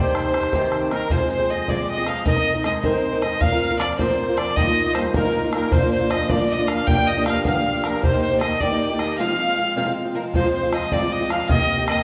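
Driving and wild, this Celtic folk jig in 6/8 sets an earthy, biting fiddle up front on the melody with light vibrato, a reedy, shimmering musette accordion on a vintage-sounding second line, a boxy, picked old ladder-braced acoustic guitar with audible finger squeak carrying the accompaniment, and a boomy, open bodhran entering at 0.1 seconds, all carried by the wet reverb of a recital hall in this short cut from a longer piece.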